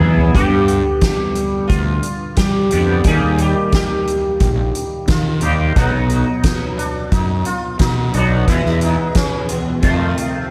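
Fuzzed, overdriven fingered electric bass sits up front in this dark, mysterious psychedelic rock excerpt at 88 BPM in a straight 4/4, with a short drum fill from 0.0 to 0.4 seconds before the chords move through G, Eb, B and E to a closing F7. A bright, twangy, double-tracked electric guitar plays a clean picked riff through a rotary speaker, while a buzzing sitar carries the melody with shimmering sympathetic strings and an analog delay. A soft-mallet drum kit with a fat snare and punchy kick rounds out the sound in a small room ambience.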